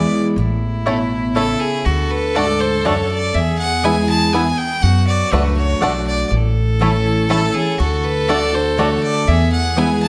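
A biting, up-front fiddle carries the melody in this lively, virtuosic bluegrass excerpt at 121 BPM in 3/4, joined from 0.4 seconds by a second, intense fiddle line with tape echo, over bright full-bodied picked acoustic guitar, woody pizzicato upright bass, twangy fingerpicked banjo arpeggios and mellow mandolin stabs in the background, all moving through A, D and E chords in a wet, large studio reverb.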